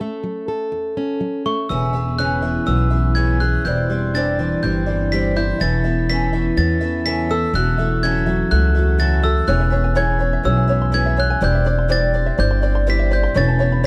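A straight 4/4 pulse at 124 BPM carries this uplifting indie folk excerpt, where a fingerpicked plugged-in steel-string acoustic guitar opens alone. Moments later a sparkling glockenspiel melody on hard plastic mallets arrives, and at 1.7 s a shimmering, octave-doubled picked twelve-string acoustic guitar and a thumpy, woody pizzicato upright bass join to start a build-up. At 9.5 s a plunky open-back banjo playing arpeggios with slapback echo and a dark, mellow upright piano with audible action noise sitting in the background enter, and the opening guitar drops out at 11.4 s, all in a dry, close 1970s-style studio sound.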